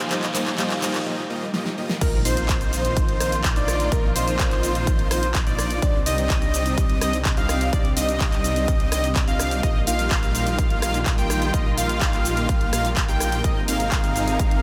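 A straight 4/4 pulse at 126 BPM drives this powerful, emotional festival progressive house excerpt, tuned to A4 = 439 Hz. The opening two seconds form a build-up: a fingerpicked jumbo steel-string acoustic guitar with fresh strings sounds only briefly at the start, while a very quiet electronic riser rises under a drum fill before a short break. At 2.0 seconds the drop lands with an impact, a punchy, up-front layered kick and a big-room kit of huge snare, handclaps, hi-hat, rim click, shaker and crash, as a bold, dark unison lead with vintage 12-bit sampler grit plays arpeggios. Beneath it, sounding from the very start of the excerpt, sit a dense, airy supersaw riff with vibrato, a menacing, beating detuned saw bass that is saturated and high-pass filtered, and a veiled, con sordino string section holding distant chords in the background. All four of these parts, along with the guitar, pump with sidechain compression. 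The chords move from Abadd9 through Bbsus4, Cmadd9 and Ebadd9/Bb, and a cathedral reverb of 6.5 seconds soaks the mix in a dreamy haze, with diffuse ambient delay trailing the guitar, supersaw and lead.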